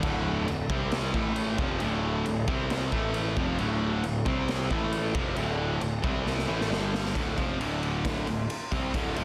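A straight 4/4 pulse at 135 BPM drives this energetic, swaggering hard rock excerpt, where a raw garage drum kit sits up front with a boomy kick, dark cymbals and a gritty, saturated sound while a growly fuzz-toned electric bass plays alongside three bright picked guitars (one distorted, scooped and compressed, one high-gain, and one overdriven and double-tracked) that sit in the background riffing over a cycling D5, C5, A5 progression, before a drum fill from 6.3 to 7.1 seconds leads into a new section, with the overdriven guitar dropping out at 7.2 seconds, all set in a small room with light reverb and a dense, heavily limited modern master.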